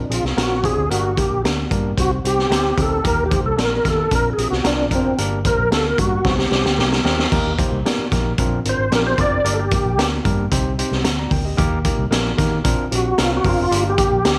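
Set in a small room with light reverb, this danceable, uptempo 1960s-style soul excerpt at 112 BPM in Eb major features a fat tonewheel organ carrying the melody as a solo throughout, with key click, overdrive, chorus vibrato and a slow rotary speaker; a bright, barky overdriven tine electric piano through a combo amp, a dark, round, foam-muted fingered electric bass, and a saturated, up-front garage drum kit with a high-tuned snare and punchy kick support it, and the drums play a fill from 6.3 to 7.3 seconds over a looping Bbadd9, Gm, Cm, Eb progression.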